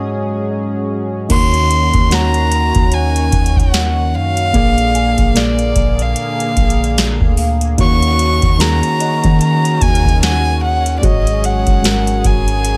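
Late-night and sensual, this contemporary R&B excerpt in Eb minor at a swung 74 BPM opens with warbling, chorused electric-piano-like synth keys, a shimmering pulse-width pad and a bell-like celesta echoing softly in the background, before a close, dark violin melody with light vibrato and tape echo, a round 808-style bass and a booming, up-front analog drum machine with crisp snare and metallic hats all enter at 1.3 seconds, the celesta dropping out at 11.4 seconds amid a digital ambience.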